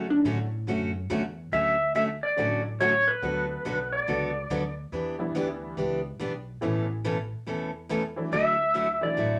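Western swing country with a cheerful, playful lilt, this short cut from a longer piece sets a bright, full-bodied picked acoustic guitar and a detuned, jangly honky-tonk upright piano over a woody, dark pizzicato upright bass, while a twangy, clean lap steel carries the melody up front with slide and volume swells from 1.5 to 4.7 seconds and again from 8.3 seconds, all in a wet studio ambience over a Dmaj7, Bm7, Em7, Aadd9, Dadd9 progression.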